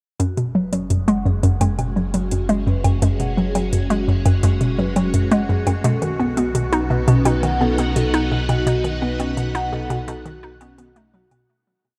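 Mysterious and expansive, this short piece of ambient space music is driven by an up-front, hollow square-wave pluck that repeats a bouncy 8-step riff, over a round sine sub bass holding the roots and a light machine pulse of overdriven closed hats and low woodblock. A swirling, warbling string machine with phaser and ensemble chorus fades in on slowly shifting chords, while a metallic vibraphone in the background fades in with a delayed 12-step arpeggio loop that drifts against the bar. A huge ambient reverb surrounds the mix, and the piece fades out from 7.7 seconds.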